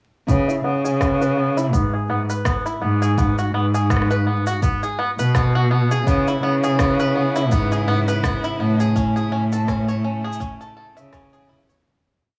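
A swung sixteenth-note groove of soft, tape-warm electronic kick and clicking shaker and rim sets this delicate, autumnal folktronica piece, where a bright, twangy fingerpicked banjo arpeggio with a filter sweep and analog delay rides over a dark, bowed cello bass line full of vibrato and portamento, a background chamber string quartet adds sustained chords from 6.1 s, and vinyl crackle and small-room cassette ambience frame it all before a fade-out from 8.0 s.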